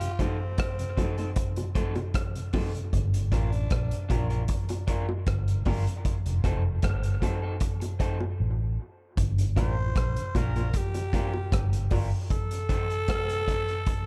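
A straight 4/4 pulse at 77 BPM anchors this spacious, meditative dub reggae passage, cut from a longer piece. A vintage drum kit sits up front with a punchy kick, hi-hat and rim click, its top rolled off and its small room pumping. Tight, high-tuned bongos played with soft hands stay in the background, band-limited and trailed by dub echo. A warm, slightly broken-up electric guitar through a small old amp adds picked lo-fi accompaniment, while a very quiet, flute-like tonewheel organ breathes through slow rotary chorus vibrato. After an opening break over F7, a dark, foam-muted electric bass enters at 2.9 seconds with a round, punchy low end. The raspy, growling tenor saxophone leads with light vibrato and dub echo, the drums fall silent briefly from 8.4 to 9.2 seconds, and a filter sweep colours the closing stretch as the saxophone returns at 9.6 seconds over Gm7 and F7, all bathed in light studio reverb.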